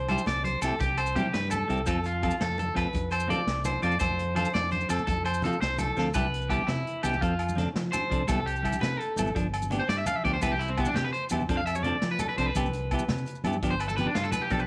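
Light reverb and a studio ambience frame this joyful, sunny highlife guitar band excerpt, which moves in a straight 12/8 at 112 BPM in C major. Up front, an electric guitar at the edge of break-up plays twangy, picked arpeggios coated in slapback echo, while a clean electric guitar plays a picked accompaniment with a warbly pitch drift. Beneath them, a fingered electric bass sounds dark, round and punchy, and a vintage drum kit in a small room gives a natural, rolled-off feel with a medium-tuned snare and a punchy kick. Bright, thin-skinned congas played with soft hands sit distant in a large room, ringing agogo bells add a compressed, saturated shimmer in the background, and grainy, mellow maracas stay close and dry. The opening rocks between C and F until a drum fill at 6.0 seconds hands the spotlight to the clean guitar, which takes a solo from 6.2 seconds over a cycling Cmaj7, F6 and G7 progression until the cut.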